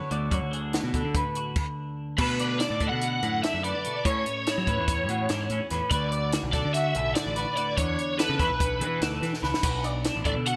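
A bright, clean, compressed twelve-string electric guitar and a twangy, slightly broken-up guitar arpeggio open this bright, playful math rock and midwest emo excerpt in 9/8, joined at once by a growling overdriven picked bass and a punchy, dry cocktail drum kit with a high-tuned snare and dark cymbals under gated reverb; after a brief stop at 1.6 seconds, an up-front overdriven lead guitar with ensemble chorus takes the melody from 2.2 seconds over shifting chords such as Bm7, Amaj9 and E7sus4, and a drum fill arrives at 9.3 seconds, all set in plate reverb with a bright 1980s-style digital sheen.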